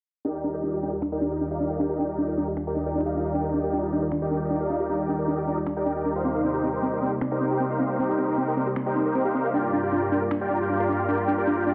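A lush, bright future bass excerpt in half-time opens with an airy, breathy pad holding chords, a soft, round pluck spinning arpeggios through analog delay, and huge, detuned supersaw chords riffing up front, while filter sweeps move across the pad and pluck, faint layered electronic finger snaps join at 1.0 s and drop out at 10.4 s, and the harmony shifts from Ebmaj7 to Cm7 to Gm7 inside a dreamy, dulled mix soaked in plate reverb.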